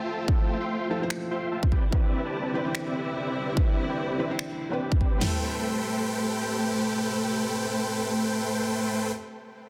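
Future bass at 146 BPM in A minor with a swung, half-time feel, lush and bittersweet, where a huge detuned supersaw riff with sidechain pumping and dub echo sweeps through a low-pass filter over soft felt-muted upright piano accompaniment and rich bowed strings in the background, moving from Fmaj7 and Cmaj9 to Am7 at 5.2 seconds, while a punchy big-room drum kit with a huge snare plays from 0.3 to 5.3 seconds alongside overdriven electronic finger snaps, in a dense, heavily limited master with light reverb.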